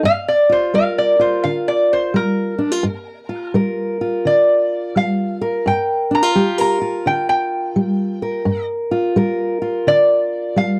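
Acoustic country blues in G minor, this smoky, brooding excerpt moves at 85 BPM in 4/4 with a swung eighth-note feel. A fingerpicked steel-string acoustic guitar carries the accompaniment from the opening, its dark, woody tone and old strings sitting up front in the low and middle register. From 0.1 seconds a lap resonator guitar, played with fingerpicks and a steel bar, takes the melody and solos across the whole passage, its metallic, nasal slide voice ringing a little louder than the accompaniment. The harmony rests on a single Gm7 chord throughout. The sound is dry and close, in the manner of a 1970s studio session, with a moderate booth ambience around the two instruments.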